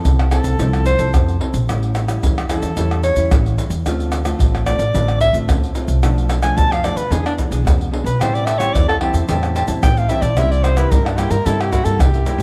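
A straight 4/4 samba-and-choro groove from a tight surdo, pandeiro, tamborim and tube shaker, played up front with soft hands, drives this lively, festive excerpt, where a breathy, close-miked soprano saxophone solos in a jazz style with vibrato, subtone and scooped notes through a slapback echo over a fingerpicked classical nylon-string guitar with finger squeak and a woody pizzicato upright bass, and a crisp picked cavaquinho joins at 8.2 s, the ensemble sitting in a moderate echo-chamber studio ambience.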